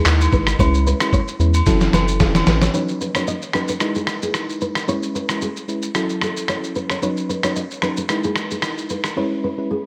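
Bright 1980s-style digital production with light reverb frames this breezy, romantic afrobeats excerpt at 112 BPM in E major, swung on the sixteenths and cycling through Emaj7, C#m7, F#m7 and Badd9. A mellow, warbling FM electric piano with chorus carries the chords, while a dark, thumb-plucked nylon-string guitar with audible finger squeak plays a riff bathed in lush chorus and delay. Underneath, a muffled, compressed sampler-style drum kit sits up front with a thumpy kick, snaps, handclaps, rim click and shaker in gated reverb; a round, deep analog bass and background agogo bells and woodblock play only in the opening, falling away by 2.7 seconds after a drum fill.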